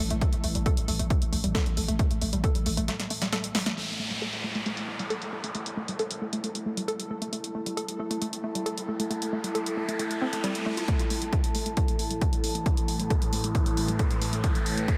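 This excerpt of driving peak-time techno has an industrial, intense mood in a straight 4/4 feel, and the whole mix is dreamy and soaked in a moderate cathedral reverb. A lo-fi, detuned pluck carries the riff throughout, with chorus, delay and sidechain pumping giving it a warbling, dusty character. Beneath it, a growling, buzzy 808-style bass with overdrive sounds only in the first 2.9 seconds, joined by a deep, moody pad drone that sits in the background, drops out, and then returns near the end. A nostalgic, tape-like pad with chorus and reverb sustains a darker texture higher up for the whole run. A punchy analog drum machine supplies filtered hi-hats and snare, while an up-front, tape-flavoured electronic kick drops out at 2.5 seconds, just before a break and drum fill around 2.9 seconds, then returns at 10.9 seconds as risers and a downlifter push a build-up to the close.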